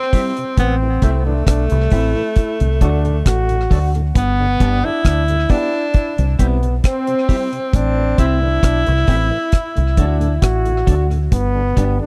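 Warm and uplifting, this short roots reggae excerpt moves at an unhurried 67 BPM in G major, cycling through C, Am, D and G. A breathy tenor saxophone carries the melody with soft, scooped notes and a whispered, intimate vibrato, while a smooth-topped trombone plays a punchy second line, both trailing dub echo. Up front, a deep, dry drum kit sets the groove with a tight kick, hi-hat and rim click, and a dark, round fingered electric bass enters at 0.6 seconds with a foam-muted, punchy tone. Further back, an electric guitar at the edge of break-up adds compressed, picked accompaniment touched by echo, and a thick, gritty tonewheel organ with audible key click turns slowly through its rotary speaker. The sound is close and dry, with little reverb, in the manner of a 1970s studio recording.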